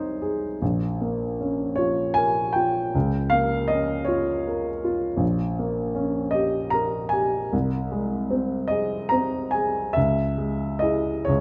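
Closely miked with light reverb and an up-front, natural presence, this short cut from a romantic classical nocturne features a warm baby grand piano alone, moving in a rubato 12/8 through dreamy, nostalgic harmonies from Bbm and Bbm6 to Ab/C and finally Dbm near 10.0 seconds.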